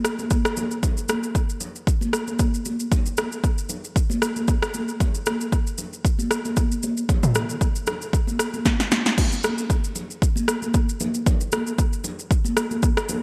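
Amapiano with a soulful, hypnotic sway and a loose 16th-note swing, built on an up-front, overdriven deep house drum kit of deep kick, punchy snare, rim click, shaker, toms and crash under gated reverb, joined at 0.2 s by distant, high-tuned congas struck with hard hands in a large room, all in a bright 1980s-style digital sheen, with a drum fill at 8.7 s leading into the drop at 9.2 s of this cut from a longer piece.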